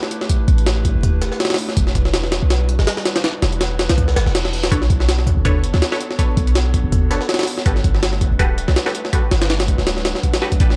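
A warbling, lo-fi pad opens this nostalgic, atmospheric drum and bass excerpt, its sustained chords drifting through chorus, phaser and built-in reverb, while a sampler-style jungle kit drives from the very start with a thumpy kick, a high-tuned snare and hi-hats that sound pitched up, compressed and gritty, sitting up front. A deep, boomy 808-style bass with a sine core and a noise layer joins at 0.5 seconds, its fast attack decaying into a mellow low end. The harmony moves from A9sus4 to Em9, and at 4.1 seconds an electronic reverse cymbal sounds in the background. It leads into a muted, filtered dub chord stab at 4.7 seconds, detuned and plucky with a short decay, treated with phaser and dub echo as the chords shift to Bm9 and then Gmaj9. The overall sound is dry and gritty like a hardware recording, with vinyl crackle adding to its dusty, bygone character.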